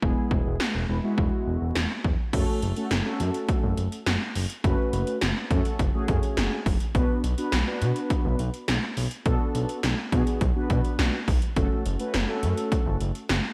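Melancholic and nocturnal, this synth-pop excerpt in F# minor at 104 BPM sets up-front, overdriven 80s electronic pad drums with a punchy kick, gated snare and metallic hats against a smooth, gliding sawtooth synth bass and a round, dark, detuned synth brass carrying chorus and slapback echo, moving from Eadd9 to F#m at 2.3 seconds and on through Bm beneath light reverb and vinyl crackle.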